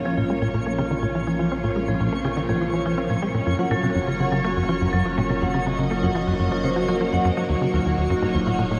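Expansive and cosmic, this ambient excerpt, cut from a longer piece, moves at 123 BPM in a straight 4/4 in Gb lydian, tuned to A4 = 435 Hz, with chords passing from Bbm to Gb at 3.5 seconds and on to Ebm7. Up front, a lush string machine holds full, vintage sustained chords with a slow attack, long release and ensemble chorus, bright against the rest. A tight sequencer bass drives a punchy riff of plucked sawtooth and square tones edged with ring modulation, subtle chorus and analog delay. Hard-mallet vibraphone arpeggios ring in a metallic yet dark, smooth voice with medium motor vibrato and analog delay, while a round sine sub bass fades in underneath. From 0.5 seconds a twinkling granular texture adds a sparkling, octave-up shimmer high above, and the whole dreamy mix is soaked in a cathedral reverb lasting 7.4 seconds, carrying the grain of cassette tape and lossy compression artefacts.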